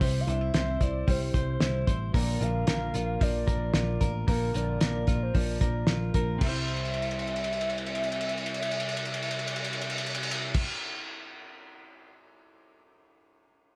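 Jangly indie pop at 112 BPM with a bright, nostalgic mood. A warbling, detuned triangle-and-sawtooth lead with chorus, vibrato and portamento floats over a fingerpicked jumbo steel-string acoustic guitar sitting in the background, compressed clean arpeggios from a direct-recorded electric guitar, a round, foam-muted vintage bass, and an up-front, muffled, gritty drum kit with a fat snare and dark cymbals that plays a fill from 6.7 to 10.5 seconds and carries on alone until 12.1 seconds, all set in a dark production with light reverb.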